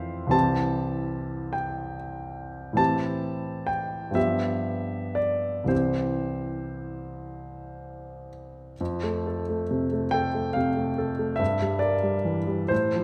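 A clear, intimate grand piano opens this tender, serene romantic nocturne, playing alone in a lilting 12/8 with free, breathing rubato. Close and natural in sound, with its action noise audible, the piano ranges from deep bass to bright treble inside the lingering bloom of a recital hall. At 8.8 seconds the harmony turns to a new passage in F major before this brief excerpt of a longer piece ends at 13.0 seconds.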